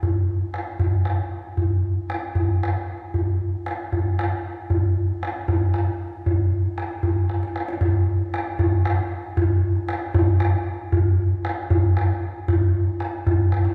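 A wet concert-hall reverb with a 2.2-second decay surrounds this short piece of Persian music, cut from a longer performance and recorded in a church or concert hall. A single tombak carries the whole of it from 0.0 to 13.7 s, its tight, acoustic tone sitting up front yet carrying a distant quality from the large room around it. The drum is played with soft hands at 77 BPM in 6/8, counted in dotted quarters with a straight feel, and the mood is melancholic and full of longing. A drum fill at 7.3 s leads from the opening section into a second one at 7.8 s, and another fill arrives at 13.5 s just before the end.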